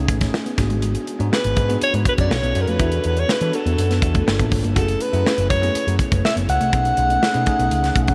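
Polished 1980s jazz-funk pop at 122 BPM in 4/4, slick and nocturnal, with a dreamy mix soaked in a huge ambient reverb. A bell-like tine electric piano with lush chorus and a very quiet, dark, fingered electric guitar riff ride over a round, punchy picked bass with an envelope filter and an up-front studio drum kit of punchy kick, medium-tuned snare and hi-hat, moving through chords such as B13, G#m7b5, E7sus4 and F#m7. From 1.3 seconds a breathy, whispered alto saxophone takes the melody with vibrato, soft attack and delay, intimate and present at the front of the mix.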